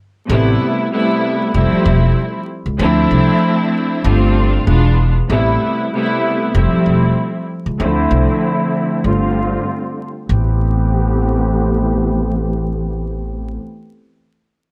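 A swung 96 BPM hip hop groove in 4/4 opens on a break at 0.0 seconds, then a tough, gritty A minor passage cut from a longer piece cycles through Am9, Fmaj7, Dm9, G7sus4 and E7b9. A woody, thumpy upright bass plucks gut strings up front in a low register, while a dark, veiled studio string section plays bowed and con sordino with vibrato, its tape-soaked, filtered tone swept by a filter between 5.3 and 10.3 seconds. Light reverb and vinyl crackle give the whole track a dusty, lived-in surface.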